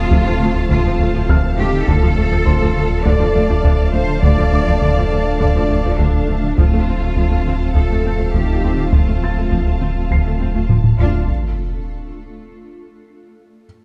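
A cinematic hybrid orchestral and electronic film-score passage at 102 BPM in 4/4, vast and futuristic, where lush vibrato violins, violas, close cellos and double basses join mellow French horns and distant trombones over a deep sine sub bass, a round analog bass riff, tight detuned sawtooth arpeggios, a cloudy granular pad with phaser and a boxy felt-muted upright piano, alongside heavy-stick taiko drums whose fill at 10.7 s leads to a huge, bright sub drop at 11.0 s and a closing impact from 11.3 s in a dark scoring-stage space.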